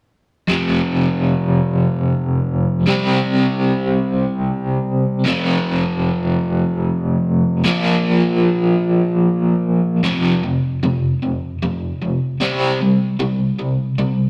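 Dark and cathartic, this slow 6/8 rock fragment, cut from a longer piece at 50 BPM, features a lone crunchy, bright, overdriven electric guitar, picked and double-tracked up front with tremolo, moving through F5, C5 and Bb5 power chords from 0.5 to 14.3 seconds inside a stone room's wet reverb, captured as a rough rehearsal-room recording with warm saturation.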